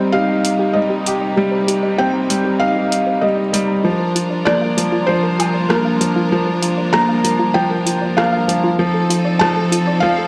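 A felt-muted upright piano carries a mellow, intimate melody with audible action noise and a digital delay in this melancholic, hypnotic piano and strings electronica passage, while a clear baby grand piano sits up front with a natural riff of its own. A lush symphonic string section holds smooth, bowed chords beneath them, and a soft, round pluck sits in the background, playing chorused, delayed arpeggios under a filter sweep that runs through the whole build-up. A deep house drum kit with a tape-warm, small-room character arrives at 0.4 seconds, adding hi-hat, rim click and woodblock before dropping out at 9.8 seconds. A dark, round analog bass lies barely audible underneath, and the harmony moves from Cm7 to Gm7 to F7. A wet echo chamber reverb gives the mix its sense of space, and the piece is cut from a longer work.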